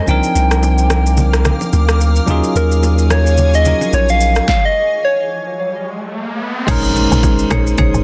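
A dense, heavily limited modern mix with light digital ambience carries this soulful, late-night amapiano cut, taken from a longer piece and moving at 109 BPM in 4/4 with a swung sixteenth-note feel. A round, gentle FM synth lead with chorus, vibrato and tape echo sings the melody over a bell-like, clean tine electric piano, while a cloudy granular pad hangs quietly behind them with phaser, built-in reverb and sidechain pumping through Cm11 and Ebm11 chords. Underneath, a deep, up-front sub bass with a pitch-drop attack punches alongside an overdriven deep house kit of kick, punchy snare, rim click, shaker and crash, with very quiet, close and dry congas and bongos adding acoustic detail. At 4.5 seconds the groove stops and an electronic riser builds until an impact lands the drop at 6.7 seconds on Bbm11. There a woody FM log drum bass and bright, dry marimba stabs played with hard mallets, carrying tape echo, arrive to push the drop forward.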